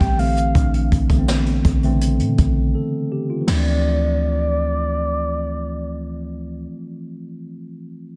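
A round, horn-like synth lead with chorus, vibrato and a soft filter swell carries the melody in this sensual, late-night contemporary R&B excerpt at 82 BPM in D minor, moving from Bbmaj9#11 to Dm7 over a mellow tine electric piano that plays on alone once the other parts stop at 6.7 s, a deep, clean 808-style bass, a faint, bell-like celesta, and an up-front brushed jazz kit with dark cymbals that drops out at 3.6 s, set in small room ambience.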